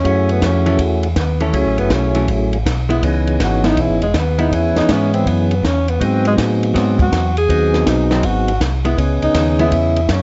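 A swung 4/4 at 161 BPM carries this late-night, soulful soul jazz organ trio in C# minor, cut from a longer piece, with a mellow, close-miked tenor saxophone soloing from the start, its vibrato and scooped notes riding over a percussive tonewheel organ melody and a round, up-front organ bass with key click, both turning through a slow rotary speaker. A compact cocktail drum kit with a high-tuned snare and punchy kick keeps time on hi-hat and ride, while a clean, compressed hollow-body archtop guitar adds picked accompaniment from 0.7 seconds. The chords move from F#m7 to C#m7 and G#7#9, and the dark production sits in light reverb.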